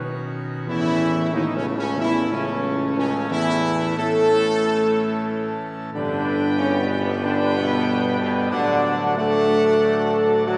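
In a straight 4/4, this triumphant, regal classical fragment has a bright trumpet section carrying the melody with light vibrato and soft attacks over dark, distant French horns and a majestic full pipe organ with brilliant mixtures, joined at 0.7 s by mellow trombones in the background and a clear, vintage-toned tuba on the bass, all set in a wet church reverb as the harmony moves through A, G and D.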